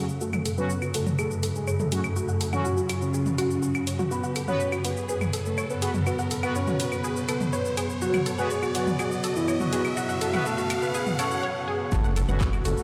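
This excerpt of melodic techno at 123 BPM opens on a fat, mellow analog lead carrying the melody with vibrato, lush chorus and tape echo, joined by a punchy detuned unison pluck spinning arpeggios through vintage 12-bit sampler grit, brassy synth stabs in the background, and a swarming, tense drone that evolves with a moving notch and bright granular shimmer. A deep, moody ambient pad enters at 0.9 seconds with slow-attack sustained chords, while a house drum kit of claves, handclaps, bright hi-hats, shaker and toms drives underneath with overdrive, studio reverb and sidechain pumping. The whole passage is a dramatic, cinematic build-up over F#m and B5, with filter sweeps on the pluck, lead and pad as an electronic riser climbs from 0.3 seconds. After a brief break, an impact lands at 11.9 seconds on F#m, bringing in a punchy overdriven kick, a rumbling detuned saw bass and a very quiet acoustic shaker and snare. 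Everything sits in a huge ambient reverb, like a big sound system playing in a bare room.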